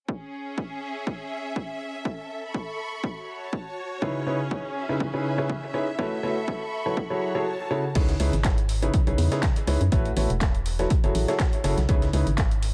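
A lightly swung 4/4 pulse from a punchy analog kick drives this soulful, bittersweet piano house excerpt, where a lush, biting symphonic string section pumps against the beat until 8.0 s, a woody, smooth upright piano riff with dub echo enters at 4.0 s, and from 8.0 s a dark, hollow organ-like FM bass, a tape-warm drum machine with crash, handclaps and hi-hat, and a gritty sampler-style breakbeat kit tucked in the background join over extended chords in an echo-heavy digital ambience.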